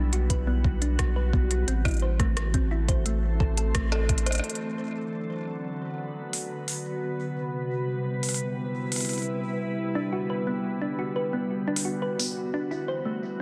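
Cerebral and intricate, this 87 BPM IDM excerpt in B phrygian floats on a glassy, ethereal FM pad holding sustained chords in a lush hall, while a tine-like, nasal synth pluck spins chorused arpeggios with tape echo, and a round analog bass and electronic kick anchor the opening. The organic electronic kit adds crisp hats, rim clicks and a softly clipped snare, and after a band accent and drum fill the bass, kick and pluck fall away by 4.4 seconds, with the pluck returning at 10.0 seconds over chords moving from Bm to Cmaj7 and Gmaj7. The dense, heavily limited master keeps the mellow pad up front.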